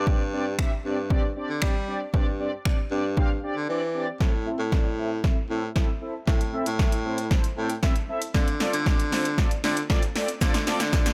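Energetic and confident, this dance-pop fragment pairs a velvety baritone saxophone bass line, sung with vibrato and a smooth top and pumping with the beat up front, with dark, round synth brass built from detuned sawtooth tones under chorus, a low-pass filter and sidechain pumping, all driven by a tape-saturated analog drum machine of punchy kick and snare, hi-hat, shaker and finger snaps with a large-room sheen, dry overall, moving from Gsus4 through a brief break at 3.7 seconds into a build-up from 4.2 seconds where a drum fill and a filter sweep on an analog polysynth carry it over Am and Dm7.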